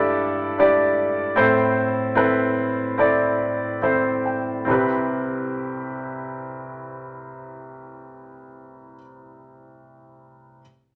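Hopeful and emotional, this short pop fragment, cut from a longer piece, rests on a clear baby grand piano playing accompaniment across its full 10.6 seconds. The tempo sits in the 70-79 BPM range in a straight 4/4 in C major, tuned to A4 = 439 Hz, and the pulse slows down through the opening phrase. The harmony moves from Em7/G to Am, and the piano adds a fill from 3.4 seconds before settling onto a Cmaj7 as a new section begins at 4.7 seconds. The piano spans C2 to G5 and sounds present and polished, placed up front in the mix. A moderate studio reverb gives the room a short, tidy tail around the instrument.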